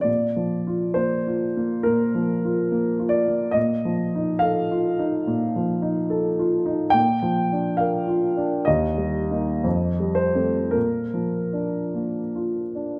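A close, detailed recording places a grand piano up front in a light reverb, its tone worn and vintage with a smooth, warm glow. This is a romantic classical nocturne for solo piano, dreamy and tender in mood, played with a free rubato over a gentle 4/4. The piano spans from deep Eb2 in the bass up to G5, giving the short passage a full, rounded register. The harmony settles on the home chord, leans into a dominant seventh over a held bass, returns home at 7.0 seconds, then passes through a subdominant and a ninth chord before resolving at 10.8 seconds. Cut from a longer piece, this thirteen-second excerpt feels intimate and unhurried, like a quiet reverie.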